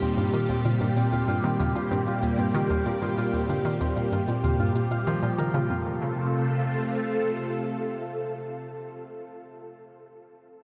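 A swirling, vintage string machine holds bright, phased sustained chords up front in this expansive, mysterious fragment of sequencer-driven ambient space music, joined by a ringing, thumb-plucked Celtic harp playing arpeggios through analog delay, a hollow, bouncy square-wave pluck riff with chorus and echo that ends at 6.0 seconds, and dry electronic cabasa and toms with delay that stop at 5.7 seconds as the chord moves from Eb to F, the whole set in a dreamy, reverb-soaked mix with a cassette-tape character.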